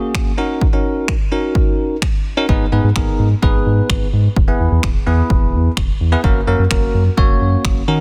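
Dance-pop at 128 BPM with a confident, driving feel, built on a bell-like tine electric piano with phaser and sidechain pumping over a punchy analog drum machine of kick and finger snaps with soft clipping on the snare, joined at 2.5 s by a round, deep sawtooth-and-sine bass that also pumps, moving through D#m7, G#m, E and F# in a dry, dense, heavily limited mix cut from a longer piece.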